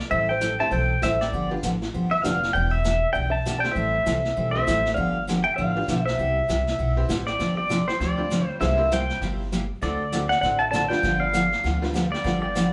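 Country western swing at 198 BPM in 4/4, with a playful, swinging lilt on the eighth notes, this short excerpt from a longer piece moves through minor-seventh and dominant chords. An up-front electric pedal steel guitar carries the melody, clean and compressed, played with fingerpicks and slide and colored by volume swells. Beneath it, a bright, full-bodied dreadnought acoustic guitar is picked for accompaniment, while a mellow, plunky open-back banjo adds a fingerpicked second line from the background. A woody, thumpy upright bass with gut strings anchors the low end, and a distant vintage kit played with brushes keeps time on snare and hi-hat with a rolled-off top. A jangly, metallic tack piano joins at 0.6 s, and the whole band sounds live together in a small, reverberant room as the tune turns toward a new section at 7.4 s.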